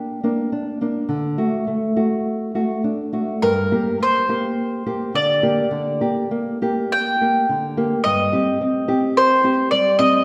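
Rubato phrasing stretches a slow 4/4 pulse of about 52 BPM in this romantic duo for mandolin and classical guitar in G minor, a fragment cut from a longer piece. The mood is yearning and solemn. The mandolin carries the melody between G4 and G5, its picked double strings giving a mellow, woody tone. Beneath it, the nylon-string guitar plays a small, thumb-plucked accompaniment from G2 to G4 with a warm sound, and both instruments sit up front for the full 10.2 seconds. The harmony moves from Gm to D, returns to Gm, and settles on Cm/G near 8.0 seconds. A wet reverb with a 1.7-second tail places the pair in a church or concert hall.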